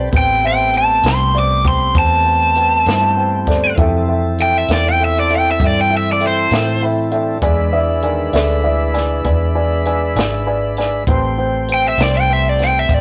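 Brooding and smoky, this slow 12/8 blues in A minor at 66 BPM sets a bright, overdriven stack guitar melody over a woody upright piano, a clean tonewheel organ turning through a slow rotary speaker, a round, foam-muted electric bass, and a dry cocktail drum kit of hi-hat, tight kick and high-tuned snare, while a breathy tenor saxophone whispers a background second line from 2.9 to 9.8 seconds, all in a rough rehearsal-room sound with stone-room reverb and tube saturation.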